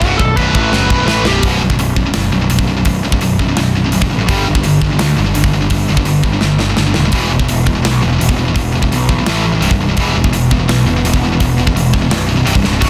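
Straight 4/4 heavy metal, dark and aggressive, is driven by a tight acoustic drum kit in a big room, with bright china and crash cymbals, hi-hat, a medium-tuned snare and a tight kick, punctuated by drum fills, under an up-front, growly fuzz bass and two high-gain distorted guitars riffing in the background. A smooth, overdriven lead guitar with tape echo carries a brief melody at the opening until 1.4 s, while a very quiet detuned sawtooth pad with chorus holds sustained chords there and returns from 8.1 s. Light reverb sits within a dense, heavily limited modern master, and the piece is cut from a longer work.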